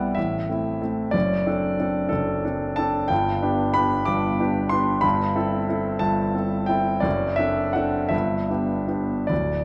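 A clear grand piano carries this brief romantic character piece alone, its intimate, natural tone set up front with the sounds of its action audible beneath the notes. Cut from a longer work, the passage sits in G major and 6/8, moving at a slow, breathing 48-62 BPM counted in dotted quarters, with free rubato shaping its lyrical, warm mood. The harmony circles gently from A minor through D7 over F sharp to G, then returns through Am7 over G and D7 over F sharp back to a G resolution at 8.1 seconds. The piano spans a generous range from deep D1 to D6 across the 9.6 seconds. A wet recital hall reverb with a 1.8-second tail surrounds the instrument, and the production leans dark and warm.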